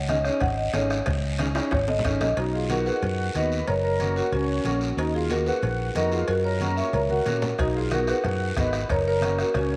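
A round, soft-malleted marimba carries the melody through this fiery, danceable cumbia excerpt, backed by a punchy, up-front fingered electric bass, a dark, clean electric guitar, raspy guiro, very quiet low-tuned congas, ringing cowbell and timbales in the background, and a soft-beater bombo that drops out at 2.4 s and returns at 7.6 s, while a reedy, full accordion joins as a second line at 2.4 s, set within a moderate echo-chamber reverb.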